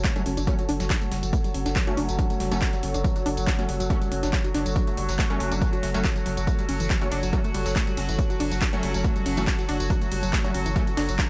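Cut from a longer driving, relentless peak-time techno track, this excerpt opens at once with a punchy electronic kick up front, a techno kit's metallic hats, handclaps, ride and tambourine, a very quiet, gritty sampler-style breakbeat kit of hi-hat and snare, a deep overdriven sub bass, a dusty pluck riff with chorus and delay, a resonant overtone-sweeping drone and a nostalgic, phased tape-like pad, the bass, pluck, drone, pad and techno-kit hats pumping to the sidechain, before an aggressive, bright rave stab joins in the background at 0.2 s, all in a fairly dry mix.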